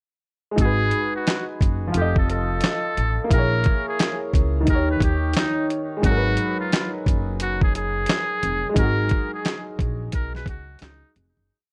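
Lo-fi hip hop at 88 BPM in G# dorian with a hazy, nostalgic mood: a short, complete piece in which a buzzy, metal-muted trumpet loops a jazz-style melody with vibrato over held, spread chords from a worn, slightly detuned upright piano with cassette-tape coloring, a sparse pizzicato upright bass line with slides, and an up-front, pitched-down boom bap drum kit with a thumpy kick and a snare layered with clap, all swung on the 16ths in light reverb before a fade-out from 8.8 seconds.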